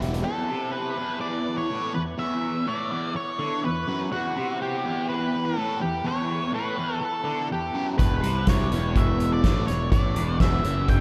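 Psychedelic rock at 124 BPM in E dorian, hypnotic and dark, cut from a longer piece, where the full band sounds briefly at the start before a bright, double-tracked overdriven guitar riff with phaser and a background tonewheel organ's fat sustained chords, with key click, slow rotary speaker and chorus vibrato, carry on while a distorted octave-fuzz lead guitar with tape echo takes the melody from 0.2 s, until a round, fuzzed fingered bass and a distant soft-mallet drum kit with a punchy kick and fat snare return at 8.0 s, all bathed in a dreamy, cathedral-sized reverb.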